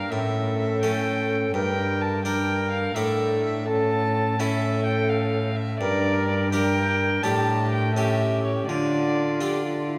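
A dark, gut-string violin in period style carries the melody of this courtly, rustic renaissance-style consort dance in 6/8 at 84 BPM, while an airy alto recorder with soft attack and vibrato weaves a second line beneath it. A rich, reedy cello holds the bass, and a thin, plucked harpsichord and a mellow trombone with a smooth top fill out the accompaniment as the harmony moves from A through Gm, Asus4 and A7 to settle on Dm at 8.7 seconds. The consort sits in a wet church reverb, and the passage is cut from a longer piece.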